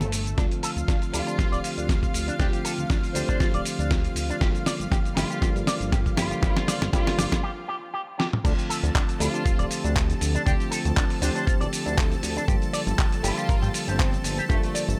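An up-front, thumpy electronic kick drives this cosmic, groovy nu-disco excerpt in D minor at 119 BPM, entering at 0.4 seconds to join a dusty, gritty soul-style drum kit of hi-hat, medium-tuned snare, handclaps, cabasa, toms and crash cymbal that is already playing, both with a compressed small-room character and a lightly swung sixteenth-note feel. A glossy, retro chorused synth bass anchors the low end while a lush, thick unison pad holds sustained chords with a pumping motion, and a bright, clean tine electric piano supplies the accompaniment. Over these, a twangy electric guitar with an envelope filter plays a picked riff, and a symphonic violin section carries the melody from 1.1 seconds, smooth-topped and full of vibrato, trailing dub echo. The first half is a build-up over Dm7 and Gm7, with drum fills and a filter sweep on the electric piano, leading into a short break before the drop at 8.4 seconds, where the same chords return. 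Light digital reverb surrounds the whole mix.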